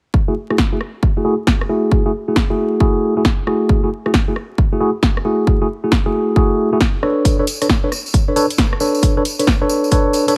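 Bell-like, clean tine electric piano stabs with dub echo and a low-pass filter sit up front in this moody, late-night two-step UK garage passage cut from a longer piece, moving from F#m9 to Bm9 at 7.0 s over a swung 135 BPM groove of layered, punchy electronic kick re-recorded in a small room and a tape-warm analog drum machine supplying hi-hat, rim click and snare, with a jingly, bright tambourine joining at 7.3 s and a layer of vinyl crackle.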